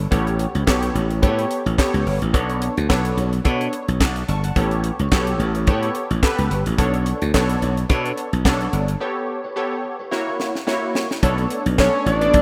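Danceable and late-night, this early-eighties boogie funk excerpt rides a 108 BPM groove in B minor with a lightly swung sixteenth-note feel. A tight, dry drum kit with a high-tuned snare, tight kick, hi-hat and handclaps sits up front beside a bright, growly slap bass, while a punchy, detuned sawtooth polysynth comp with chorus and a filter sweep fills out the middle. Underneath, a barely audible electric guitar at the edge of break-up plays a compressed, picked riff throughout. The chords cycle between A9 and Bm9 until a break at 9.0 seconds, and from 10.1 seconds a drum fill leads through an F#7 into a new section at 11.2 seconds. There a smooth, mellow analog pad slips in very quietly on sustained chords, and at 11.8 seconds a fat, saturated analog lead with vibrato steps forward with the melody. The rough home-demo mix carries a moderate, lush hall reverb over a small-room ambience.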